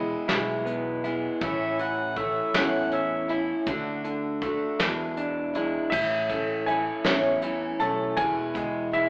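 A slow, straight 6/8 pulse at 53 beats per minute, counted in dotted quarters, carries this hopeful folk rock and heartland rock fragment in E mixolydian, with chords moving through E, A, D, E7, A and E. A soft brush kit sits up front with dark cymbals, a fat snare and a punchy kick. Beneath it, a picked electric bass adds a warm, amped low end. A picked steel-string acoustic guitar plays the chords with an auditorium-like glow, while an electric guitar through a small old amp plays a dark, slightly broken-up, lo-fi riff. A clear harmonica with light vibrato and a smooth top adds a second line from 1.4 to 3.3 seconds, and from 5.9 seconds a worn concert grand piano with deep bass and short sustain takes the melody over the closing A and E. The whole band sounds as if playing live in one room, washed in a large studio reverb and heard through an AM-radio filter.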